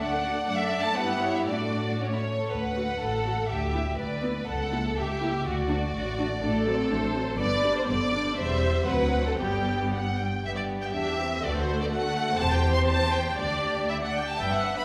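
A reverberant hall sound surrounds this brief passage cut from a longer piece, a quick classical-period movement for string orchestra in a cheerful, spirited mood. It moves at 122 BPM in 2/4 with a rubato feel, beginning in D major and turning to G major from 6.4 s. Up front, a rich violin section carries the melody with vibrato and a soft, expressive attack, while a second violin section adds a smooth, even line beneath it. The viola section fills in the accompaniment with a close, lush, warm tone, and the cello section anchors the bass with a rich, symphonic evenness. At 2.5 s the double bass section joins the low end with a focused, bowed sound, deepening the foundation as the harmony moves toward a closing suspended chord.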